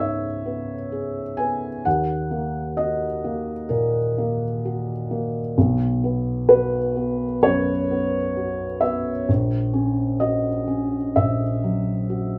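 A felt-muted upright piano plays alone throughout this intimate, wistful piece of neoclassical minimalist music, its dark, mellow, natural, thick-felt tone sitting up front as it drifts in a rubato 64 BPM in 4/4, spanning A#1 to G#5 over a C#m7, D#m, Bsus2 and F#7/A# progression, tuned to A4 = 439 Hz, and framed by a wet studio ambience with the rough character of a home demo, cut from a longer piece after 12.4 seconds.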